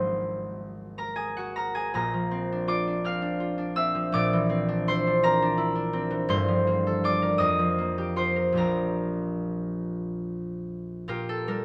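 Classical solo harp music with a peaceful, dreamy mood, this short excerpt is cut from a longer piece and runs in a slow, rubato 6/8 at about 47-57 BPM counted in dotted quarters. A concert harp plays alone from 0.0 to 11.6 seconds, its fingerpicked, ringing tone sitting up front and spanning a broad range from G1 to F6. The harmony sits in Bb lydian, opening on Ab9 before moving through Bbadd9, C9/Bb, Gm11 and F9sus4 to settle on Bb6 at 8.6 seconds. Extended chords give the harmony a soft, floating colour. A moderate stone room reverb with a 1.4-second decay lends the acoustic harp an airy halo.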